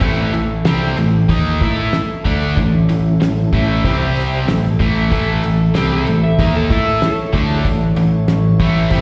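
A cranked stack guitar drives this swaggering, confident classic rock excerpt at 94 BPM in a straight 4/4, its bright, overdriven, double-tracked riff sitting up front with spring reverb and slapback echo. Beneath it, a picked electric bass holds down the low end with a round, direct tone, while a cloth-damped drum kit thuds along on hi-hat, tight kick and a fat snare, its sound dry with a rolled-off top. A mellow tonewheel organ sustains soft, clean chords in the background through a slow rotary speaker. The harmony rests on A, moving briefly to C5 at 3.8 s before returning home. From 5.1 s to 7.3 s, an electric slide guitar adds a slightly broken-up second line with digital delay and slapback echo. The whole band sounds like a live gig heard through the venue's PA, carried by the generous reverb of a recital hall.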